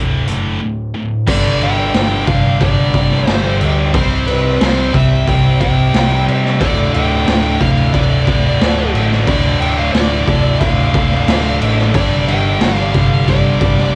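This hard rock excerpt has the sound of a home recording on cassette, set in a moderate studio ambience and tuned slightly flat, with A at 437 Hz. It moves at a driving, aggressive 90 BPM in straight 4/4. The raw garage drum kit sits up front, saturated and gritty, with a boomy kick, a medium-tuned snare, hi-hat and crash, and its top end is rolled off. Beneath it, a dark, round hollow-body short-scale bass, played with the fingers, gives a punchy low end. In the background a bright, scooped high-gain guitar and a tight distorted guitar play the riff from the start. After a brief break from 0.6 to 1.3 seconds, a second, double-tracked distorted guitar joins the riff, and a dark, high-gain lead guitar carries the melody through plate reverb over chords moving from D to G5, C5 and Dm.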